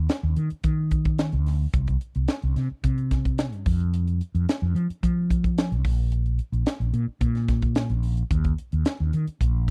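A mellow fretless electric bass opens this brief cut from a longer piece, joined almost at once by a crisp fusion drum kit at 0.1 s. The music is electric jazz fusion in a straight 4/4 at 110 BPM, with a nocturnal, funky mood. The bass is dark, round and amped, sitting up front as it moves through its low register. The acoustic kit sounds polished and airy, with hi-hat, a punchy kick and a high-tuned snare, also placed close and forward. The dry, close sound of a 1970s-style studio carries little reverb, and both parts play together through to the end at 9.7 s.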